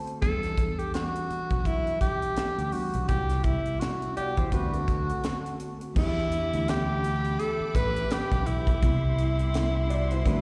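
Heard like a live gig through the venue's PA, with small-room ambience and recital-hall reverb, this smooth, cinematic stretch of lush 1970s-style soul is cut from a longer piece and rides a gentle sixteenth-note swing. A breathy, whispered tenor saxophone sits up front with scooped notes and light vibrato, carrying the melody over a tight funk kit with a high-tuned snare, a bright fingered electric bass, a mellow tine electric piano in the background and a slightly broken-up, lo-fi guitar riff, the sax, piano and guitar all touched with slapback echo. At 5.9 s a rich, bowed studio string section slips in behind with sustained chords as the harmony moves between Em7, Cmaj7 and D7.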